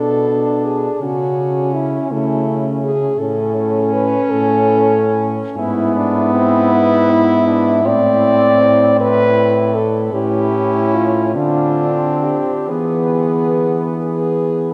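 In a rubato 6/8 that drifts between 43 and 57 BPM by the dotted quarter, this serene, lyrical classical passage for horn quartet opens in A major and darkens to A minor at 5.6 s. A warm, up-front French horn carries the melody, while a clear second horn sings an inner line with vibrato in the background, a distant, roomy horn fills in the accompaniment, and a mellow horn with a smooth top holds the bass. All four sound together for the full 14.7 seconds in a wet cathedral reverb with a long 5.2-second tail, and the passage is cut from a longer piece.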